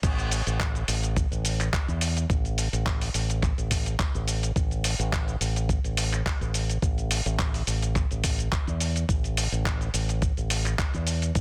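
A thumpy, compressed electronic kick, a gritty, tape-toned soul sampler kit of crash, handclaps, hi-hat, shaker and softly clipped snare, and a bright, up-front fingered electric bass with an envelope filter and sidechain pumping all drive this groovy, sleek nu-disco drop at 106 BPM with a light 16th-note swing, set in a dry, dense, heavily limited modern mix.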